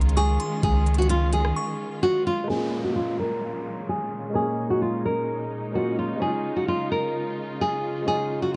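A fingerpicked nylon-string guitar carries the melody up front in this dark, menacing trap excerpt, its fresh strings sounding full-bodied, with audible finger squeak, a low-pass filter and tape echo. Underneath, a lush symphonic string section holds smooth, bowed chords with vibrato, while a deep, boomy 808-style bass and a trap kit with a knocking kick, crisp hats and rim clicks drive the half-time feel at 129 BPM in Bb minor. A delicate, tinkling FM bell adds a bright second line high above, treated with chorus, phaser, tremolo and tape echo. The 808 stops at 1.5 s and the drums drop out at 1.6 s for a short break, and a soft, felt-muted upright piano enters at 2.4 s with mellow, intimate accompaniment. An electronic downlifter sits low in the mix from 2.5 s as a filter sweep runs through the closing stretch. The harmony moves from Dbadd9 to Bbm7 and back, in a dark production with light, small-room reverb.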